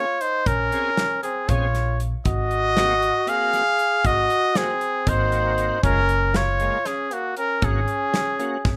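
An up-front, classical-style trumpet carries the melody over a breathy flugelhorn second line with scooped notes and light vibrato in this intricate, bright progressive instrumental in 7/8 at 235 BPM (eighths), set in Ab mixolydian over Bbm7, Ab7, Gbmaj7 and Ab7sus4, with a shouting, lightly overdriven tonewheel organ with key click and slow rotary speaker, a woody pizzicato upright bass, and a punchy-kicked acoustic drum kit, all in a rough home demo mix with light reverb and small room ambience.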